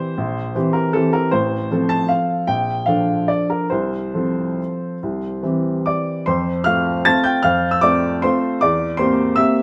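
A lilting waltz in three with a flexible, rubato pulse carries this brief classical fragment, cut from a longer piece, elegant and playful in mood. A solo upright piano, woody and open in tone with long sustain, sits up front and ranges from A1 to A6, moving through chords such as C7/Bb, Bbmaj7 and F/C before a new section begins at 6.3 seconds. Close, detailed microphones capture the instrument's clarity while a moderate recital-hall reverb gives it gentle space.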